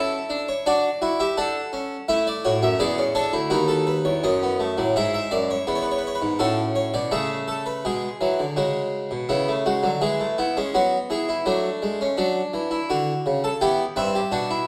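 In a straight, stately 4/4 at 83 BPM, this joyful baroque-style four-part fugue in D major, cut from a longer piece, features a solo Flemish-style harpsichord with two sets of strings, close-miked, plucked and full, sitting up front across a range from D2 to G5 within the reverberant glow of a recital hall, its opening section giving way at 7.8 seconds to a second passage that moves through minor and diminished colors.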